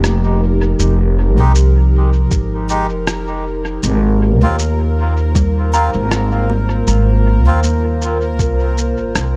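Deep and hazy, this ambient dub excerpt rests on a single Fm9 chord, with a warbling, detuned tape-like pad wrapped in chorus and reverb, a soft, woody kalimba tracing arpeggios, and a dark, thumpy pizzicato upright bass sitting up front. A muffled, pitched-down rim click and shaker carry dub echo, while a bright, resonant stepped-filter texture bubbles on a single note. Reedy, breathy melodica stabs with dub echo enter at 1.4 seconds, and a soft, tape-warm electronic kick joins at 2.3 seconds, all within a small, echo-heavy room.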